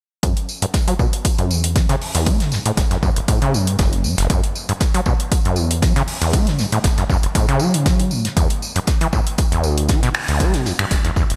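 From 0.2 seconds a punchy, overdriven electronic kick and a squelchy, resonant acid bass riff with distortion, sidechain pumping, digital delay and a filter sweep drive this gritty acid house cut at 118 BPM in F# phrygian, with a light 16th-note swing. Behind them, a booming analog drum machine adds dry finger snaps and metallic, tape-tinged hi-hat, while a damped 70s drum kit contributes a fat snare, hi-hat and tambourine, its high-passed hats and percussion pumping with sidechain compression. The bright 1980s-style digital production sits in a small, lightly reverberant room, with the kick and bass up front.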